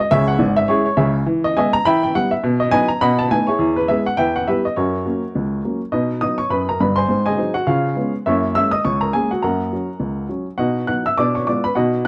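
A solo upright piano opens this brisk stride jazz fragment, cut from a longer piece, at 206 BPM in 4/4 with a swung eighth-note feel that gives it a playful, swinging mood. The piano has an intimate, woody character with short sustain and audible action noise, spanning a range from G1 up to F#6. Set in B major and tuned to A4 = 438 Hz, the harmony moves through chords such as C#m, Emaj7 and B7 before settling on F# near 4.8 seconds. A second passage begins at 5.9 seconds, returning to B and passing through G#7, C#7 and F#9 before closing on a Bdim7 chord. The sound is dry and close, like a 1970s studio recording, with the instrument placed up front in a small room ambience.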